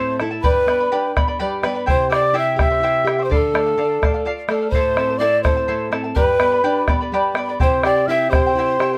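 A small, moderately reverberant room gives this short cut from a longer Andean folk piece an intimate, close feel, with an earthy and wistful mood at 84 BPM in a straight 6/8. Up front, a polished wooden pan flute carries the melody with a pure tone, vibrato, tongued attacks, a touch of chiff and lifted highs. Above it, a breathy, mellow cane quena plays a second line, close-miked and hollow, with its own vibrato and tongued notes. Underneath, a fingerpicked charango shimmers on its double strings, some of them octave-doubled, while a bright, full-bodied classical nylon-string guitar adds fingerpicked accompaniment with fresh strings, audible finger squeak and a brief fill from 1.2 to 1.9 seconds. A round, close bombo enters at 0.2 seconds and sits prominently in front, as the harmony moves through G, C, Dm, Am, G and C.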